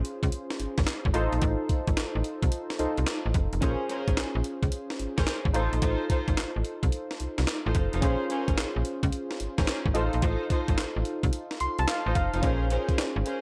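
Swung sixteenths drive this bouncy, punchy new jack swing R&B clip, where a gritty, compressed breakbeat kit with thumpy kick, high-tuned snare, hi-hat and handclaps sits up front beside snappy, metallic slap-like FM bass and round, detuned sawtooth keys with chorus and a filter sweep; reedy bowed string stabs with digital delay join at 3.6 seconds, the keys add a fill at 11.3 seconds, and a very quiet vintage cowbell appears at 12.4 seconds within a dark, warm production.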